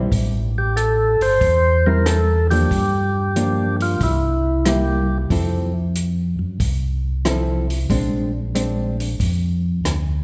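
A swinging 4/4 groove at 92 BPM anchors this soulful soul jazz organ trio excerpt, where a mellow, round tonewheel organ carries the bass line with chorus vibrato and slow rotary speaker, a compact cocktail drum kit adds hi-hat, punchy kick and rim click, a dark, compressed hollow-body jazz guitar comps until 9.0 seconds, and a percussive tonewheel organ with key click and slow rotary speaker sings the melody up front from 0.6 to 5.2 seconds over chords moving from Am7 through Gm7, C7 and Fmaj7 to Bb9, all bathed in the long reverb of a recital hall.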